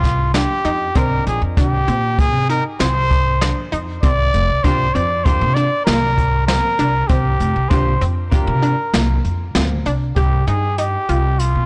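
A blown-out, overdriven recording with light reverb carries this driving, tense progressive instrumental in 5/4 at 98 BPM, in C minor and tuned to A4 = 436 Hz, cut from a longer piece. A mellow, up-front trumpet sings the melody through a delay over detuned sawtooth arpeggios from a chorused analog pluck, a woody pizzicato upright bass, and a dark brush kit with a punchy kick and soft clipping on the snare. A clean, compressed hollow-body guitar adds accompaniment from 1.0 to 8.8 seconds as the chords move from Cmadd9 to Gm7 and land on Cm at 10.2 seconds.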